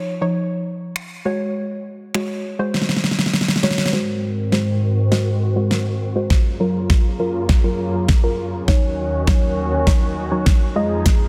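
A straight 4/4 pulse at 101 BPM drives this bittersweet dance-pop excerpt. A soft, round, detuned pluck opens alone, colored by chorus, sidechain pumping and a low-pass filter, before an electronic pop kit enters at 1.0 s with knocking kick, fat soft-clipped snare, crisp hats and finger snaps. A drum fill at 2.7 s leads into a build-up and filter sweep at 3.9 s, where a lush, woody string section with vibrato arrives, pumping and filtered, over chords moving from Dbadd9 and Gbsus2 through Ab7, Gbmaj7 and Ebm7 to Fm7, all within a dense, heavily limited master with light reverb and digital ambience.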